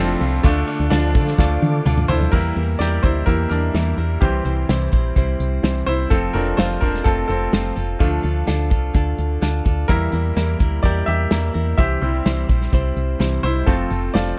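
Piano-driven pop at 127 BPM with a bittersweet, dramatic mood, cut from a longer piece, where a brilliant baby grand carries a piano solo throughout over a punchy, round FM bass, a scooped, direct-recorded clean electric guitar riff, and an up-front acoustic drum kit played with bundle sticks that fills from 1.4 to 2.3 seconds, while a soft, flute-like tonewheel organ with chorus vibrato and slow rotary speaker and a jingly tambourine sit in the background only until about 2.3 seconds, all in a dry, close 1970s-style small-room sound as the chords cycle through Dm, Edim, C and F.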